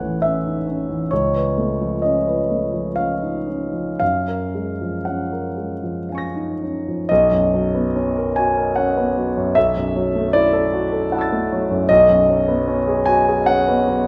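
A rubato triple metre drifts freely through this short excerpt of impressionist solo classical piano, dreamy and serene in mood. A warm concert grand sits up front with a deep bass and natural tone, spanning a broad register as lush extended harmonies move from an opening Aadd9 through Gbmaj9 and, after the shift to a second section at 7.1 seconds, settle onto B69. A wet recital hall reverb surrounds the instrument in a soft halo of space.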